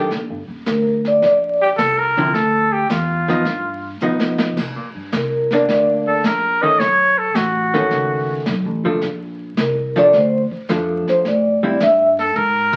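A dark, clean hollow-body electric guitar opens this swinging, late-night small-group jazz cut together with a woody pizzicato upright bass, while brushed drums join almost at once with dark cymbals, a medium-tuned snare and a boomy kick. The tempo sits at a relaxed 108 BPM in 4/4 with a strong eighth-note swing, and the harmony drifts through colourful chords from a rootless Ebmaj7 through Gaug7 and B9 to Am7. A mellow, ringing vibraphone played with soft mallets and a slow motor vibrato carries the melody in short phrases, first at 0.7 seconds, placed up front in a boxy small-room sound. A trumpet with light vibrato takes a prominent second line from 1.6 seconds, its tone warm and close, while the drums add brief fills, the last arriving at 12.4 seconds. The whole fragment, cut from a longer piece, is bathed in a lush studio reverb and the crackle of a very old 78 rpm record, giving it a dusty, nostalgic character.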